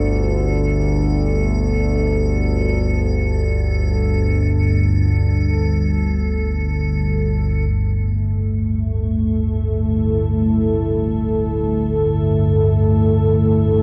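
In free time, this ominous, vast dark ambient drone is cut from a longer piece and rests on an up-front analog drone, warbling and sawtooth-edged, that holds low over a Gsus2 before shifting to A5 at 7.7 seconds. High above it, a faint icy glass pad adds a crystalline, airy shimmer throughout, and at 8.1 seconds a deep, detuned analog pad arrives with moody sustained chords carrying a sub octave. A cathedral reverb with a 4.9-second tail and worn cassette tape, with its warbly pitch drift and faint mains hum, lend the sound an aged, ominous quality.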